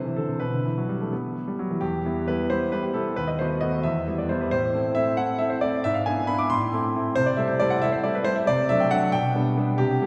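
A graceful, elegant classical-period piano sonatina in 6/8 with rubato, this short cut from a longer piece features a solo concert grand played up front with a clear, natural tone, deep bass and long sustain, set in a wet concert hall reverb as its harmony moves from E minor through A minor toward G major.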